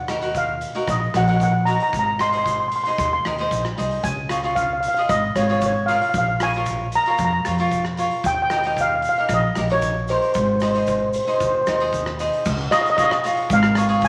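A moderate large-studio reverb and a layer of vinyl crackle frame this short calypso cut from a longer piece, sunny and bouncy at 114 BPM in a straight 4/4 and set in D-flat major. Up front, a lead steel pan carries the melody between C5 and C6, its shimmering, metallic tone made mellow and soft by rubber sticks. Beneath it, a pizzicato upright bass with steel strings gives a woody, warm low end, while a crisp, picked cavaquinho adds bright acoustic accompaniment from 0.1 seconds. A big rock drum kit, recorded in a big room, brings a punchy kick, bright cymbals, hi-hat and rim clicks, and a grainy egg shaker sits in the background. The chords move from Ebm through Abadd9, Db, Bbm, Eb and Ab before a new section opens on Db at 12.5 seconds.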